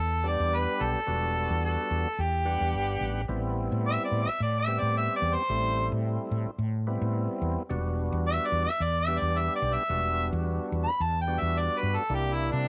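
The recording has a studio ambience, with the harmonica and bass sitting up front. This brief cut from a longer soul blues piece moves on a straight-eighth feel with a gentle sixteenth-note swing, and the mood is soulful and smoky. An overdriven harmonica carries the melody as the solo voice; it is warm yet distant, with light vibrato and scooped notes in a pop style. Underneath, a woody fretless electric bass with a hollow-body, amped character gives a growly, punchy low end. A percussive tonewheel organ joins at 0.2 s, lightly overdriven and full, with key click, third-harmonic percussion, vibrato and a slow rotary speaker. The harmony moves from Em7 to Am7, back to Em7, and lands on C7 at 12.1 seconds.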